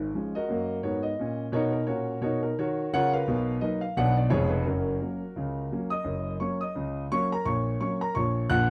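A concert grand piano plays alone throughout this short stride jazz passage, its deep bass and long sustain set up front with a slightly boxy character. The mood is swinging and playful, moving at a brisk 172 BPM in 4/4 with a light swing on the eighth notes, in F# major. The piano spans from E#1 up to F#6, and the harmony travels from F# through F#/A# to Bmaj7, then Bm and C#7/E#, before returning to F# and moving once more to F#/A#. The 8.7 seconds, cut from a longer piece, fall into two statements of the same section, the second beginning at 6.1 seconds. A moderate studio reverb and a dark, warm production give the piano a close, warm sound.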